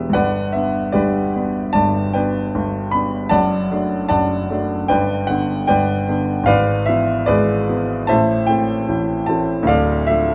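A warm, smooth grand piano carries this passionate, stormy romantic character piece on its own, heard up front with a slightly vintage tone. Cut from a longer work, the passage unfolds in 4/4 with free, rubato phrasing, and the piano spans from a deep D1 up to B5. The harmony moves from G through D/F# and back to G, then turns darker at 6.5 seconds with E7/G# resolving to Am before shifting to Dm near the close. The instrument is tuned slightly high, with A4 at 445 Hz. Close, detailed microphones capture the playing, set inside a moderate recital hall reverb that gives the sound a natural sense of space.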